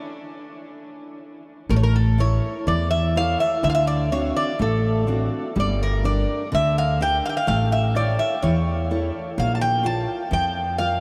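Greek folk from a bouzouki band, tense and dramatic, opens with the metallic, double-strung bouzouki playing alone before a full-bodied jumbo steel-string guitar and a woody, thumpy pizzicato upright bass join at 1.7 seconds, the bouzouki's up-front melody carrying over them through a huge, echoing reverb that suggests a vast space.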